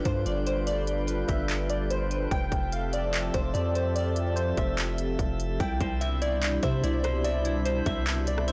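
A deep, sine-toned 808-style bass sits up front in this blissful, floating cloud-rap excerpt, holding long notes with a quick attack that decays and a gritty edge of transformer saturation. It enters at 0.1 seconds with a trap drum kit of electronic handclaps, crisp hi-hats, rim clicks and a hard-clipped kick, also placed up front, moving in a half-time feel at 146 BPM in 4/4. A crystalline wavetable pluck carries the melody with detuned, ring-modulated tones, a noise layer, a filter sweep and a moving notch, treated with chorus and tape echo. Beneath it, a moody sawtooth pad with a sub octave holds full-bodied, slow-blooming chords through G7 and Fmaj7 before settling on Cmaj7 in C major, pumping with sidechain compression. A calm layer of drifting overtones lingers faintly in its own reverb, and at 5.6 seconds a clean, fingered semi-hollow electric guitar joins with warm arpeggios trailed by tape echo. 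The whole recording is mostly dry, blown-out and overdriven.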